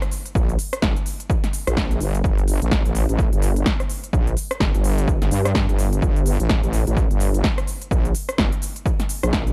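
A dry, up-front mix opens this bouncy, aggressive bass house cut, taken from a longer piece, at 127 BPM in G minor with a 60% swing on the 16ths. An overdriven big-room dance kit of crisp hats, rim click, shaker and a punchy snare starts at 0.0 s, re-recorded in a large room. At 0.4 s a layered, distorted electronic kick arrives alongside a heavy, wobbling bass built from detuned sawtooth and sine unison, saturated, compressed and treated with chorus and sidechain pumping between G1 and G2.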